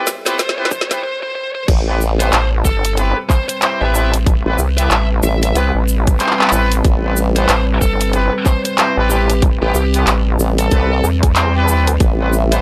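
A dry, gritty recording with transformer saturation frames this funky, swaggering glitch hop clip, where a moody, detuned analog pad with lush chorus and vintage horn stabs with tape echo both pump against a tight, up-front electronic kick, a drum kit of woody snare, bright hats, crash, handclaps and rim clicks, a grainy tube shaker and a distorted high-gain guitar lead, until the drop at 1.7 s brings in a sawtooth formant-sweep wobble bass, joined at 2.3 s by a nasal, saturated vowel-sweep wobble bass.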